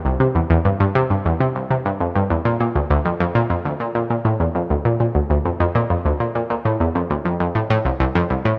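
A round, detuned analog pluck with a ring-modulated, filter-swept edge plays alone from 0.1 to 8.5 seconds, sitting bright and up front in the low register between C2 and C3, its fast attack and short decay stretched by chorus and delay in a plate reverb, giving this short cut from a longer ambient piece in Bb lydian at 100 BPM in a straight 4/4 an expansive, cosmic mood.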